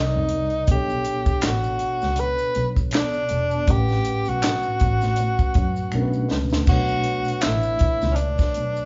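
Smooth and sultry, this short neo-soul and R&B excerpt moves at a relaxed 80 BPM in B minor with a swung sixteenth-note feel. A breathy tenor saxophone carries the melody up front, played with subtone, light vibrato and scooped notes in a pop style, its top kept smooth. Beneath it, a mellow tine electric piano heard through its built-in speakers supplies clean chords moving through Bm7, A69 and Bm9, while a bowed double bass adds a nasal, reedy gut-string tone in a period style. A compact cocktail drum kit, dry and up front with dark cymbals, a high-tuned snare, a punchy kick and handclaps, enters at 0.3 seconds and plays a fill from 5.9 to 6.7 seconds, as maracas and finger snaps sit quietly in the background. The band sounds live in one room, with a moderate large studio reverb and a muted top end.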